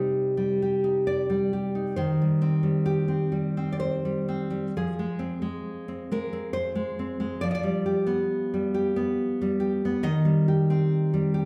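A solo nylon-string guitar opens on a C minor chord, fingerpicked and placed up front with a full-bodied, deep classical tone. This romantic piece moves in a slow 3/4 at about 67 BPM, and the rubato gives the beats an uneven, breathing feel. The mood is melancholic yet passionate as the harmony passes through Cm/Eb and Fm, then reaches a tense G7/F near 7.4 seconds before settling on Cm/Eb at 10.0 seconds. Playing on its own, the guitar spans from low C3 up to Eb5. A reverberant recital-hall acoustic, like a church or concert hall, surrounds the instrument for this 11.5-second passage cut from a longer work.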